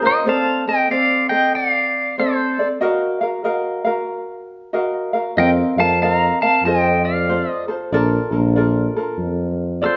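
Languid and dreamy, this Hawaiian piece sways in 4/4 with a gently swung feel, a short cut from a longer performance. An electric pedal steel guitar carries the melody up front, its clean, compressed tone played with fingerpicks and slide and shaped by volume swells. Beside it, a bright acoustic ukulele supplies light, thumb-plucked accompaniment through the Csus2 and Ebmadd9 opening chords. At 5.4 seconds a mellow, breathy tuba enters on the bass in a pop style, with a light vibrato, as the harmony moves through F7sus4 and F7 to a closing Bbmaj7. The band plays live in one large studio, bathed in a wet reverb, and the whole sound has a soft, rounded top end.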